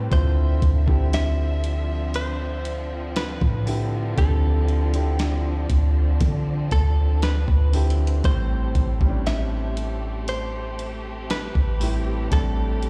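The recording sounds like it was played back through a big sound system in a bare stone room, yet it stays fairly dry and close. This sensual, moody contemporary R&B fragment, cut from a longer piece, moves at a slow 59 BPM in straight 4/4, tuned slightly low to A4 = 438 Hz. A gritty, compressed sampler-style drum kit, with a thumpy kick, medium-tuned snare and hi-hat, sits up front from 0.1 s beside a deep, boomy 808-style bass whose mellow sine tone carries a noise layer, a fast attack and a decaying tail. A natural-sounding concert grand piano with a rich low end plays the accompaniment, while a distant, bowed studio string section holds expressive sustained chords with vibrato, portamento, a soft attack and sidechain pumping. Over them, a clean, direct-recorded electric guitar picks a compressed melody between A4 and E5, colored by tremolo and tape echo. The harmony rests on Dm9 before shifting to Am9 at 8.2 s.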